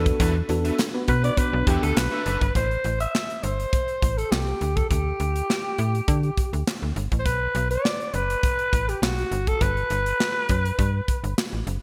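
A phased, mellow FM electric piano, a twangy, slightly broken-up guitar riff with ensemble chorus and a snappy, metallic slap-like FM bass open this danceable, slick early-eighties boogie funk excerpt at 102 BPM in A dorian. A punchy, polished studio kit of kick, medium-tuned snare, hi-hat and handclaps with gated reverb joins almost at once, and a growling, raspy alto saxophone with subtone, vibrato and delay enters at 1.1 s. The piano and guitar are gone by 2.5 s, leaving the sax to ride over the up-front bass and drums through chords moving from Am7 to Gmaj7, all set in a bright digital production with a lush hall reverb.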